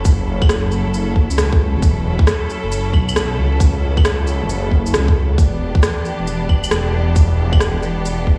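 A cut from a longer future garage piece opens at 135 BPM in 4/4, with a 66% swing on the sixteenths and a nocturnal, ghostly mood in F# phrygian. A bright, lush studio string section holds sustained bowed chords with vibrato, roughened by vintage 12-bit sampler grit and pumping against the sidechain. Beneath it sits an up-front, menacing detuned saw bass, a saturated unison sawtooth-and-sine tone that evolves through a filter swell and also pumps with the sidechain. An electronic shaker, claves and rim click tick along from the start, joined at 0.1 s by a tight, tape-warm electronic kick that sits up front, both re-recorded in a large room. The harmony moves from F#m7 to Em7 at 5.4 s, and the dry mix carries a faint stone-room ambience, as if played through a big sound system in a bare space.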